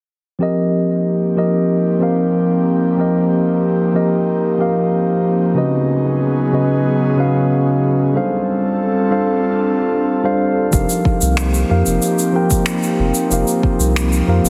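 Heavily compressed with a radio-like sound and bathed in a lush hall reverb, this wistful, relaxed sunset chillout excerpt moves at 93 BPM in 4/4. A mellow, clean tine electric piano with tape echo provides accompaniment while an airy, breathy pad carrying chorus and vintage 12-bit sampler grit holds sustained chords through F9sus4, Db9sus4 and G9sus4. At 10.7 seconds a round sine sub bass and distant, roomy shaker and finger snaps arrive with a deep, overdriven electronic kick drum up front, which drops out at 13.8 seconds.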